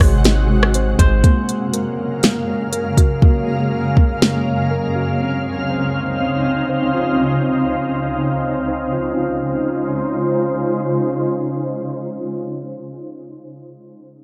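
Atmospheric cloud-rap hip hop in Db major at 121 BPM with a half-time feel, floating and blissful, where a shimmering, detuned ambient pad with octave-up shimmer and granular sustain holds chords under muted, felt-like synth key arpeggios soaked in chorus and delay, a fingerpicked Celtic harp rings out a brief melody with digital delay until 3.0 s, a deep, boomy 808 bass sounds only until 1.2 s, and a tape-warm, smooth R&B kit with soft kick, fat snare, rim click and smooth hats sits up front until 4.3 s over chords moving from Ab7 to Gbmaj7 to Dbmaj7 in this excerpt of a longer piece.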